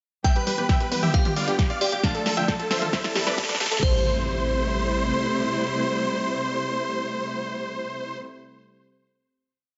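Emotional and bittersweet, this uplifting trance piece in A minor at 134 BPM builds for its first 3.8 seconds on a punchy four-on-the-floor electronic kick, a dry analog drum machine with snare, hi-hats, toms and crash, a dark rolling sequencer bass and a mellow arpeggiated sequenced synth, while a huge, euphoric supersaw lead pumps with sidechain and delay over distant, lush bowed strings, doubled by a faint detuned unison pluck and joined by a glassy, warbling FM bell, before quiet riser and impact effects carry it into a final chord from 3.8 seconds.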